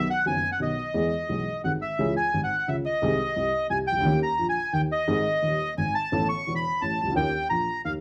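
A vinyl-crackled, moderately reverberant studio sound frames this passionate yet playful tango fragment in a loose, rubato three-time, where a reedy, band-limited bandoneon carries the high melody up front while a dark, woody upright piano, slightly detuned and full of audible action noise, supplies intimate accompaniment across a harmonic-minor progression.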